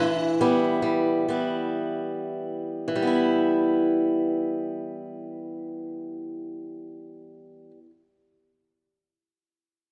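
Longing and mournful, this short cut from a Celtic slow air in E minor drifts in rubato 3/4 at around 50-71 BPM, easing as it opens. A bright, boxy picked swing-style acoustic guitar sits up front on accompaniment throughout to 7.9 seconds, while a buzzing, shimmering sitar with sympathetic strings sounds its E4 melody in the background only until 1.7 seconds, all set in a moderate concert hall reverb.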